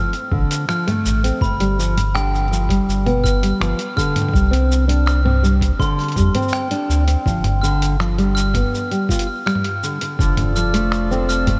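Pastoral and hopeful, this folktronica excerpt moves at an unhurried 82 BPM in a straight 4/4, cut from a longer piece and steeped in a dreamy, reverb-soaked mix. A full-bodied nylon-string guitar carries the arpeggios from the first moment, thumb-plucked with audible finger squeak and fresh strings, sitting up front with subtle chorus and analog delay. Almost at once a lo-fi sampler-style drum kit of cabasa, finger snaps, hi-hat and toms enters, soon joined by a thumpy, pitched-down electronic kick, both muffled, compressed and tape-warm in a small room ambience, while a round, sine-like sub bass with tube saturation anchors the low end. A bright, sparkling glockenspiel struck with hard plastic mallets adds a bell-like second line from 0.7 seconds, close-miked and touched with delay. The harmony circles through F6, G7(no3) and Csus2 before returning to F6, where a reedy, breathing pedal harmonium enters at 10.2 seconds with dark, smooth sustained chords.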